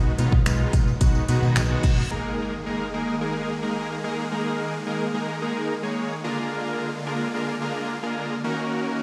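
Energetic and confident, this dance-pop excerpt moves at 109 BPM in G# dorian, opening with a fat, detuned sawtooth polysynth up front and huge, airy supersaw chords, both pumping against the sidechain, over a round, foam-muted vintage electric bass, joined at 0.2 s by a punchy house drum kit of kick, metallic hi-hat and finger snaps, with a jingly tambourine in the background. Bass, drums and tambourine drop out at 2.0 s as a reverse cymbal rises into an impact at 2.1 s, leaving the polysynth and lush supersaw chords to carry the sustained harmony through G#sus2, A#7 and D#m7. The sound is that of a big system in a bare room, with a large studio reverb.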